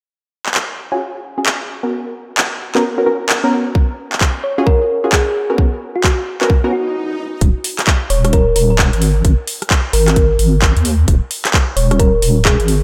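A punchy, bright chord stab with a sawtooth bite and a filtered, decaying pluck features in this soulful, skippy UK garage excerpt, cycling through lush added-eleventh and suspended chords from 0.9 to 6.7 seconds, coloured by chorus, delay and a cassette-tape haze while a filter sweep moves across it. The garage drum kit sets a swung two-step groove at 131 BPM from 0.5 seconds with handclaps, rim clicks and metallic hi-hats, and a tight, layered electronic kick joins up front at 3.8 seconds. Soon after, a round, tine-like FM pluck resembling a thumb piano carries a gentle, dark melody with chorus and delay. A short electronic swell and a brief stop lead into the second part at 7.4 seconds, where a deep, soft wobble bass takes over the low end, its detuned square-and-sine tone compressed, sustained and warm under chorus. The whole track sits in a dreamy mix soaked in plate reverb.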